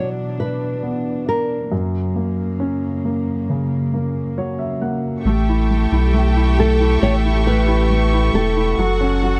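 Tender and heartfelt, this short pop ballad moves at a slow 68 BPM in a straight 4/4, cut from a longer piece. A thumb-plucked nylon-string guitar carries the classical-toned melody in a narrow high range, while an up-front baby grand piano lays down the accompaniment and adds a fill from 3.9 to 5.3 seconds. Beneath them a dark, intimate studio string section holds bowed chords with a soft attack, light vibrato and a sul tasto tone. At 5.2 seconds a lush symphonic violin section joins with a focused, smooth-topped second line, and a round, deep sine sub bass comes in up front. The harmony moves from B minor to F sharp, then opens onto A and F sharp minor, all captured in a dry, close 1970s-style studio sound with little reverb.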